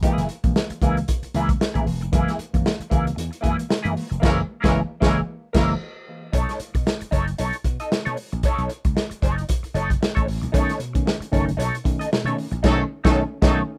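A crunchy, saturated breakbeat kit with a tight kick and dark cymbals drives this energetic, strutting funk excerpt at 114 BPM in 4/4 with a light sixteenth-note swing, shifting from F#9 to B9 at 6.3 seconds. Growly slap bass through an envelope filter, a clean picked electric guitar with wah, and stabs from a worn, slightly out-of-tune tine electric piano with overdrive and tape echo fill out the groove. A clear vintage horn section with light vibrato joins the band accents from 4.2 seconds, all in a rough home demo mix with little reverb and the drums sitting up front.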